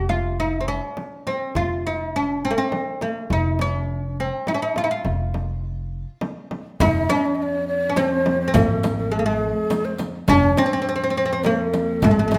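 Arabic maqam ensemble music in F maqam huzam, passionate and festive, moving at 103 BPM in a straight 3/4, cut from a longer piece and heard in a moderate recital hall. A woody, plectrum-plucked fretless oud with double strings carries the melody up front over a thumpy pizzicato upright bass and a deep, close, dry frame drum struck with hard hands. At 6.8 seconds a breathy end-blown ney with vibrato and a crisp attack adds a second line, while a rich, reedy bowed cello with gut-string tone holds an F drone, a crisp metal-shell darbuka played very quietly with soft hands joins, and a riq with dark jingles sits in the background.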